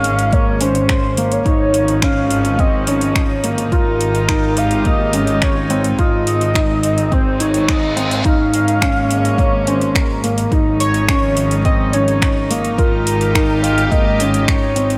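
Light reverb and a small-room ambience frame this luminous, hopeful piano and strings electronica passage at 106 BPM, where a velvety sawtooth synth lead carries the melody through chorus, phaser and a cassette-tape tint above soft-attack, sul tasto string chords. A felt-muted upright piano repeats a dark, intimate riff while a focused, bowed double bass section holds an Ab, both the strings and bass breathing with sidechain pumping. An overdriven deep house kit of finger snaps and metallic hi-hats runs throughout, a deep electronic kick enters at 0.3 seconds, and a reverse cymbal sweeps in at 7.4 seconds over the Ab chord, just before the Bbm7/Ab, Dbadd9/Ab and Ebadd9/Ab progression comes around again.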